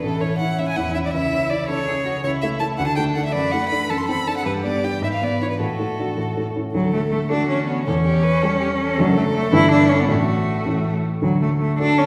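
Graceful and lively, this quick classical-period movement for piano trio moves at 107 beats per minute in a lilting 6/8, counted in dotted quarters, in D major. A solo violin carries the melody with a rich, expressive tone, shaped by vibrato, soft attacks and sliding portamento. Beneath it, a solo cello sings a second line with a focused, smooth-topped sound and its own vibrato, sitting up front in the blend. A baby grand piano supplies an intimate accompaniment, its short sustain and audible action noise giving a natural, close-up character. The passage falls into two phrases, the second starting at 6.7 seconds, with chromatic colour from diminished chords along the way before a cadence on A and a settle onto D at 11.2 seconds. A generous scoring-stage reverb surrounds the trio, and the clip is cut from a longer piece.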